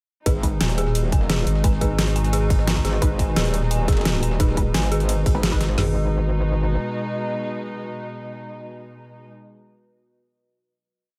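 A saturated, metallic wobble bass with overdrive and sidechain pumping sits up front in this dark, aggressive, mechanical drum and bass piece at 174 BPM in G# minor, joined by a thick, growling FM bass from 1.5 to 2.8 seconds. Three layered drum kits drive the drop: a tight kick and woody snare up front, an overdriven dubstep kit with bright hats and rim clicks, and a very quiet, gritty looped breakbeat with edits. Above them play an eerie, inharmonic detuned bell arpeggio with dub echo, sparse phased chord stabs, and veiled con sordino strings, until the drums stop around 5.8 seconds and the strings, stabs and a lo-fi, warbling tape-like pad carry the final chord.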